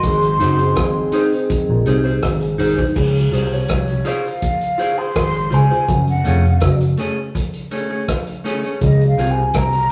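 A breathy, hollow concert flute carries the melody up front and takes a solo from 3.0 s in this uplifting roots reggae excerpt at 82 BPM in Db major, over a round, dark foam-muted fingered bass, a vintage drum kit with a punchy kick, crash, hi-hat and rim click, a stringy clav riff treated with phaser and slapback echo, a clean picked electric guitar entering at 0.4 s, and a smooth trombone section playing a second line that stops at 2.6 s, all set in a rough rehearsal-room sound with tube saturation and a stone room reverb.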